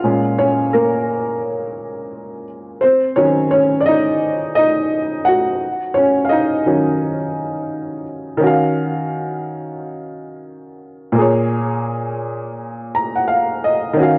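Hip hop with a hazy, reflective mood, this short cut from a longer piece features a solo felt-muted upright piano, soft and intimate with a short sustain and vintage character, carrying the Bbm7, Ebm7 and Ebm9 chords with a gentle 16th-note swing through cassette-tape grit and light studio reverb, closing on a brief piano fill from 12.6 to 14.0 seconds.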